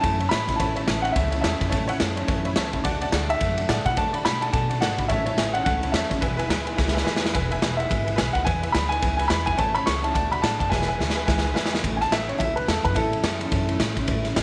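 A polished, intimate upright piano with audible action noise carries the melody in this rowdy, retro rockabilly excerpt in A major, swinging at 214 BPM. A jangly, detuned honky-tonk piano, a bright dreadnought acoustic guitar sitting in the background, and a thumpy gut-string upright bass fill out the band. Up front, a gritty, saturated garage kit with a punchy kick and a pumping stone-room sound adds fills before the piano takes a solo at 11.8 s.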